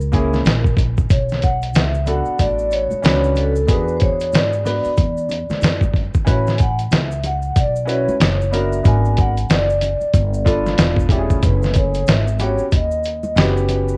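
A gritty, compressed sampler-style drum kit with a thumpy kick and fat snare sits up front in this mellow, smoky jazz-hop excerpt at 93 BPM in F# minor, swinging over a woody, growly pizzicato upright bass, a smooth vintage grand piano, a ringing soft-mallet vibraphone melody with slow motor vibrato, and soft-handed maracas and congas in the background, with cassette-tape coloring on the drums, piano and vibraphone and light small-room reverb.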